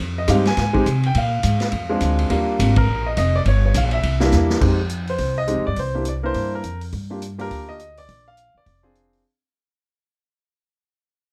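A warm concert grand piano carries the melody up front in this brisk, sophisticated jazz piano trio excerpt, swinging at 208 BPM over changes that open on Fm7 and move through Bb7 and Ebmaj9. A woody, growly upright bass with steel strings starts things off at 0.0 seconds, and a vintage drum kit with dark cymbals, a punchy kick and a rolled-off top sits a little further back, kicking in just after the piano moments later. The band hits an accent at 2.7 seconds and the drums play a fill at 4.3 seconds before the whole trio fades out from 4.6 seconds, all captured with close, detailed microphones in light reverb.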